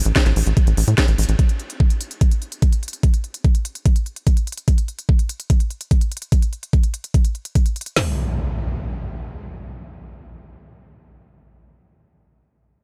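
A tight, dark sequencer bass with a punchy sawtooth and square-wave pluck opens this intense psychedelic trance excerpt at 146 BPM in 4/4, driving up front until 1.4 s. Almost immediately an overdriven electronic drum kit takes the lead with a knocking kick, woody snare and bright hats, layered over a quieter second kit with a cracking snare and smooth hats, all in a dry, close sound. At 8.0 s the drums drop away and an electronic impact effect rings out up front to close the passage.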